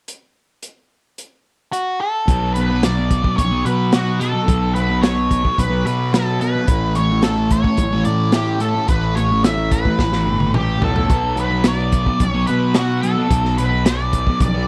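Trippy and hypnotic, this psychedelic rock excerpt moves in a straight 4/4 with a dry, close studio sound in a 1970s style. A crunchy breakbeat drum kit opens alone, its tight kick, medium-tuned snare, hi-hat and toms sounding gritty and saturated with a rolled-off top, sitting up front. At 1.7 seconds an octave-fuzz lead guitar enters with a dark, picked melody soaked in wah, distortion and tape echo. At 2.3 seconds a thick, double-tracked fuzz guitar joins with a low riff coloured by phaser, alongside a round, overdriven fingered bass played up front, as the harmony moves from B5 to Aadd9 to Bm. A drum fill between 10.0 and 11.1 seconds leads into the final chord before the fragment cuts off.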